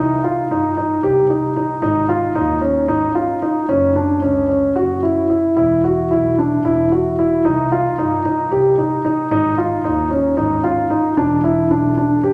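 A dark, mellow baby grand piano sits up front with long-sustaining arpeggios while a single bowed double bass plays a smooth, even bass line with vibrato beneath it in this restless, pensive contemporary chamber piece in 7/8 at 225 BPM in eighths, its straight feel carried through a wet recital-hall reverb and harmonies moving from Cm through G#5, F#5 and E5 before settling on E7(no3) near 11.2 seconds in this 12.3-second fragment of a longer work.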